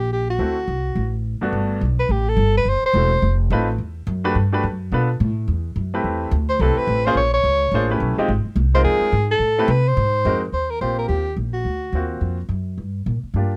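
Small-group jazz in a swing-and-bop vein, this short excerpt moves at a brisk 213 BPM in 4/4 with a swung eighth-note feel, its mood warm and playful. A mellow soprano saxophone carries the melody up front, played with light vibrato, subtone, soft attacks and scooped notes; it sounds from the start, pauses at 3.4 seconds, and returns at 6.5 seconds. Beneath it, a pizzicato upright bass with steel strings gives a woody, warm tone and runs the full length, while a clear baby grand piano supplies intimate accompaniment from 0.4 seconds, its action noise audible. The harmony wanders through colourful chords such as F7#11, Em11 and Ab9 before settling into Eb major on an Eb69 at 10.5 seconds, then turning toward D7alt and Gm7. Close, detailed miking and very little reverb keep the trio dry and present.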